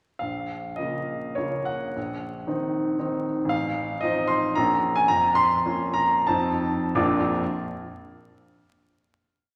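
A clear, intimate grand piano opens this brief, bittersweet and brooding romantic character piece in Bb minor, setting a single-line melody over bass and chords on the beats in a rubato 3/4 that moves between 82 and 119 BPM, slowing from 2.7 to 7.0 seconds as the harmony passes through Cm7b5/Bb and F7 before resolving onto a Bb major chord at 7.0 seconds, its natural, up-front tone carrying audible action noise inside a wet recital-hall reverb beneath a vinyl crackle.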